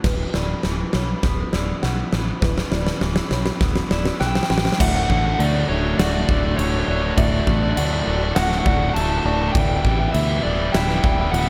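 Post-rock in D major at 101 BPM in a straight 4/4, this euphoric, cinematic fragment of a longer piece opens on an Em7/D chord with a build-up and drum fill across its first 4.8 seconds. A huge arena drum kit sits up front with a punchy kick, fat snare and bright crash cymbals in a pumping hall, while a fingered electric bass, foam-muted and direct, holds down the low end. Underneath, a very quiet warbling tape-like pad sustains nostalgic lo-fi chords, a felt-muted upright piano plays dark, boxy arpeggios through digital delay, and a twangy clean guitar picks arpeggios bathed in lush chorus and delay. A crunchy overdriven guitar enters at 4.2 seconds with a delayed melody, and at 4.8 seconds the harmony shifts to D as a compressed distorted guitar and a thick fuzz guitar join with a distorted riff in the background. The progression returns to Em7/D at 9.6 seconds, and the whole is finished with light studio reverb.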